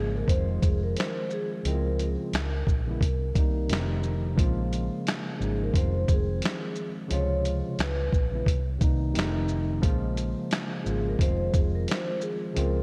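Hazy and reflective, this lo-fi hip hop excerpt moves at 88 BPM in 4/4 with a 16th-note swing, cycling through Fm7, Dbmaj7, Dbm7, Cm7, F7 and Bbm7. A mellow soft-mallet vibraphone with slow motor vibrato carries the melody through a low-pass filter and tape echo, over a tine electric piano heard through its built-in speakers and a dark, foam-muted, round fingered bass. A compressed, pitched-down sampler-style kit sits up front from 0.3 s with a thumpy kick, snare, hi-hat, shaker and finger snaps, while a lush 2.4-second hall reverb soaks the dreamy mix.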